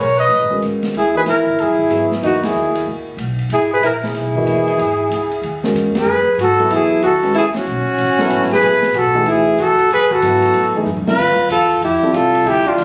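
Modal jazz with a searching, cool swing, cut from a longer piece and captured on a phone in a reverberant club room, where a mellow, distant trumpet with light vibrato and scooped notes leads over a clear, soft-edged alto saxophone second line, a woody, thumpy pizzicato upright bass, a dark grand piano with deep bass comping from 0.5 seconds, and a smooth acoustic drum kit with dark cymbals and a boomy kick that enters at 0.2 seconds, marking band accents and a fill near 10.9 seconds.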